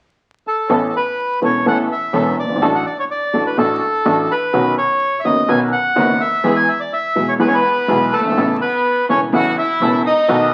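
Heard through the crackle of a very old 78 rpm record and a moderate large-studio reverb, this passionate, nostalgic tango in A major moves at 125 BPM in 4/4 with a rubato feel. A dark, airy bandoneon carries the melody up front from 0.5 seconds, joined by an intimate, slightly detuned upright piano with audible action noise, veiled con sordino string stabs kept very quiet, and a growly pizzicato upright bass in the background. At 7.4 seconds a smooth, gut-string violin section adds a bowed second line with light vibrato, over chords moving from Aadd9 through D/A, Badd9 and E back to Aadd9.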